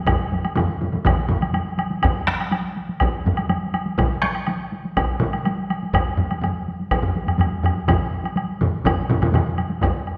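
A steady, straight 4/4 pulse at 123 BPM drives this ceremonial, powerful piece of Japanese traditional music for taiko drum ensemble, heard as a short cut from a longer performance. Four taiko ensemble parts play together from 0.1 to 9.9 seconds: one struck with hard sticks and miked close, another with heavy sticks in a live room, a third with hard sticks that sounds vintage and band-limited and sits up front, and a fourth with heavy sticks in a small room. A woody woodblock, also captured in a small room, plays alongside them from 0.1 seconds and carries on until 10.2 seconds. The whole passage forms a single section, carried by the weight of the massed acoustic drums. A wet scoring-stage reverb with a 1.7-second decay lends the ensemble a sense of grand space.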